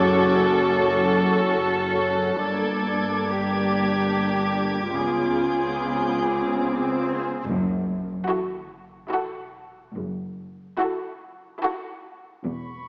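Eerie and uneasy, this cut from a longer suspense film score moves at 72 BPM in a straight 3/4, built from bowed string sections playing con sordino. Up front, the muted violins carry a veiled, vibrato-laden melody over a dark viola accompaniment with a soft attack, while a close cello section sits in the background and a distant double bass section anchors the low end with light vibrato. High above, another muted violin section adds a smooth-topped texture through the opening, with the harmony moving from F#m through Gm to C#7. An electronic swell and sub drop enter at 6.0 s, rising into a band accent and impact at 7.5 s, where the music settles into F# minor on an F#m7 chord. From 8.3 s, a further muted violin section holds a second line on F#4 beneath the melody, all set in a moderate scoring-stage reverb with a small-speaker sound.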